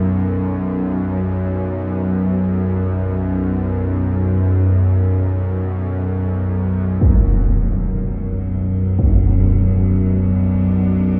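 This dark ambient drone piece unfolds in free time, its mood ominous and vast, heard as a short cut from a longer work. A tense, sawtooth-edged drone sits up front from the first moment, string-like and ringing with a noise layer, slow attack, long release and vibrato inside its own built-in reverb, while a mellow, boxy grand piano plays barely audible arpeggios beneath it until 7.0 seconds. At that point a huge, dark impact lands up front under a low-pass filter, and a muted cello section enters con sordino, its veiled, bowed chords carrying light vibrato and a soft attack through shimmer reverb. A filter sweep moves across the drone through the closing stretch to 11.2 seconds as the harmony settles onto B minor. The whole recording is bathed in a cathedral-like reverb with a dark, warm production.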